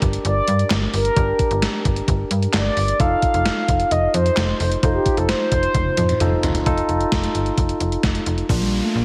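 Synth-pop with a nostalgic, upbeat mood, moving in a straight 4/4 pulse through a short cut from a longer piece. A mellow, horn-like synth lead carries the melody with a soft attack, sustained notes, vibrato and a chorus sheen, while a barky tine electric piano adds bright, clean accompaniment. A slap-like FM bass gives snappy, metallic attacks that decay, and an up-front 80s digital drum machine drives the groove with a thumpy kick, hi-hat, handclaps, toms and a gated reverb snare. The harmony moves from Gm to F7, a drum fill runs from 5.7 to 6.7 seconds into a new section, and the drums stop at 8.6 seconds as a brief electronic downlifter closes on Bb. The mix sits in a moderate concert hall reverb with a heavily compressed, radio-like sound.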